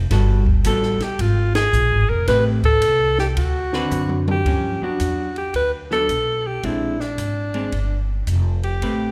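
A relaxed 110 BPM swing in 4/4 sets up this sophisticated small-group jazz fragment in G major, with a dry, compact cocktail kit of dark cymbals, high-tuned snare and punchy kick keeping time under a woody, up-front pizzicato upright bass. A clean, picked hollow-body electric guitar adds dusky chords such as Gmaj9, Am9 and Bb9. A bright, forceful alto saxophone enters at 0.7 seconds to carry the melody with vibrato, joined by a band accent at 1.5 seconds and a drum fill from 3.9 seconds, all sitting in light reverb.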